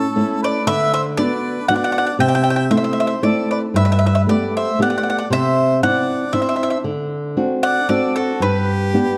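Romantic and lively, this short passage from a longer Italian folk serenade sways in 3/4 with a rubato feel. A mellow bowl-back mandolin carries the melody up front, its picked double strings ringing in a middle-high register. A bright harmonica with light vibrato sings a quieter second line in a classical style beneath it. A fingerpicked flamenco guitar, warm and placed up front, supplies the accompaniment from low bass notes to the middle range. The harmony moves from A through D6, C6 and Gadd9 to Cadd9 and D7 before settling on G at 8.4 seconds. A moderate concert hall reverb surrounds the trio, and the production has a dark overall cast.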